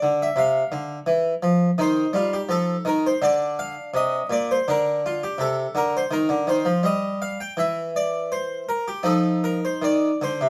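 Classical music in a baroque-style suite movement, this short section cut from a longer piece feels radiant and dance-like, moving at 83 BPM in 4/4 with a flexible rubato. A solo harpsichord carries everything from 0.0 to 10.5 seconds, spanning Bb2 to G5, and its airy, plucked, Italian-style tone sounds full thanks to two sets of strings. The instrument sits up front in a light reverb, tuned to A4 = 442 Hz. The harmony opens on F5, passes through Eb69, Bb/D, C7sus2 and Ebmaj13/D, then breaks from chords at 7.6 seconds before returning to F5 at 9.0 seconds. Those rich added-note colours give the dance-like movement a bright, glowing character.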